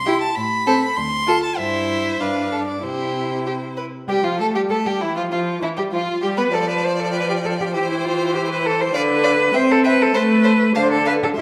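A quick, lively classical-period movement for string quartet in C major, moving at 99 BPM in a straight 2/4 with a graceful poise. The first violin carries the melody, its tone rich, close and smooth with even vibrato, while a clearer-toned second violin weaves a second line alongside it. The viola supplies accompaniment with a full, up-front sound that still carries a distant quality, and the cello anchors the bass with a focused tone and a smooth top, all four bowed by single players with vibrato throughout. The harmony opens by moving from A minor through D minor seventh and G seventh to settle on C, then at 4.1 seconds a new section turns toward F and G seventh before drifting through C over E and B minor over D. A recital hall's wet reverb, lasting about 1.5 seconds, gives the ensemble a spacious glow in this short passage cut from a longer piece, which breaks off on a bare D seventh chord.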